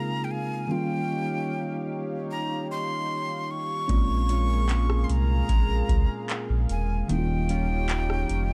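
A breathy jazz flute with vibrato, a crisp chiff and digital delay carries the melody over a mellow tine electric piano and a smooth, chorused analog pad in this sensual, moody contemporary R&B excerpt at 75 BPM, moving between Bbm7 and Eb9. At 3.9 s a booming analog drum machine with deep kick, metallic hats, handclaps, rim click and 12-bit sampler grit arrives up front beside a deep, full sub bass with octave, while a clean, direct-recorded electric guitar plays lush chorused arpeggios in the background of a dark, dry production.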